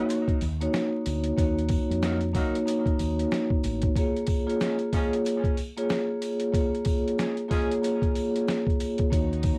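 A lo-fi cassette sound with vinyl crackle and light reverb frames this moody, tough boom-bap hip-hop excerpt, built on a gritty, pitched-down sampler kit with a thumpy kick and swung hi-hats, and a mellow, ringing soft-mallet vibraphone up front over Ebm7 and Bbm7 chords. Punchy, distant horn stabs with tape echo sound until 7.7 seconds, while a round, dark fingered electric bass with tube saturation plays from 0.4 to 3.9 seconds and returns near the end. Jingly sleigh bells sit in the background throughout, and a smooth, bowed string section slips in softly at 9.1 seconds.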